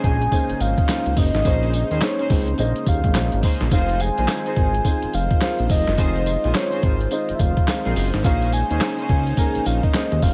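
Gritty, pitched-down boom bap drums with a thumpy kick, handclaps and tambourine sit up front beside a fat, detuned sawtooth bass in this punchy, slick new jack swing excerpt at 106 BPM in Bb minor, where a round, chorused octave-layered synth lead carries the melody over a dark grand piano, a swirling phased pad and veiled, muted string stabs that drop out at 9.2 s.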